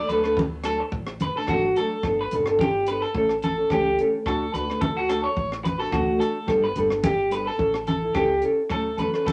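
Joyful and danceable, this highlife guitar band excerpt moves at 108 BPM in D major with a light sixteenth-note swing, as a bright, twangy, slightly broken-up electric guitar plays up-front arpeggios over a small, dark-toned fingerpicked nylon-string guitar, a woody, thumpy pizzicato upright bass, thick-skinned congas entering at 0.4 seconds and a compact cocktail drum kit with a punchy kick, hi-hat and rim click, set in a wet studio reverb while the chords cycle through D, Gadd9 and A before landing on Dmaj7.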